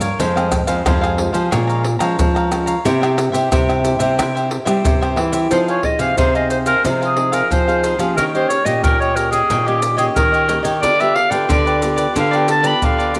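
Set in a wet echo-chamber reverb with small-room ambience, this bittersweet, yearning excerpt of samba and choro moves at 90 BPM in F minor, with a crisp picked cavaquinho and a fresh-stringed, finger-squeaking nylon-string guitar in the background, an up-front fingerpicked classical nylon-string bass, and close, dry maracas, pandeiro, tight surdo and tamborim, before a bright, vintage, soft-attacked solo clarinet takes up the melody at 5.5 seconds over chords moving from Fm through Eb7 to G7/D.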